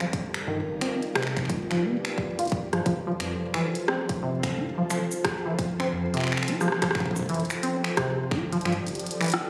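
IDM with a glitchy, playful, swung feel, where a glassy, ethereal FM pad holds sustained chords beneath a rubbery, resonant acid bass arpeggio with subtle chorus and digital delay, an up-front glitchy kit of finger snaps, clicky hi-hats, rim clicks and shaker is joined by a tight electronic kick, a round sine sub bass with tube saturation enters at 0.5 seconds, and a drum fill at 2.5 seconds leads into the second section, all bathed in a huge ambient reverb and captured on a phone in the room.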